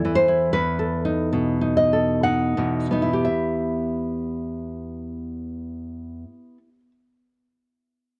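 A dark, fingerpicked nylon-string guitar sits up front in this melancholic, wistful excerpt of a romantic classical solo in E minor and 3/4, played with rubato between 54 and 82 BPM, slowing through its opening 3.3 seconds over Am/E and B7/E before settling on Em, its finger squeaks caught in a dry, close 1970s-style studio sound with small room ambience.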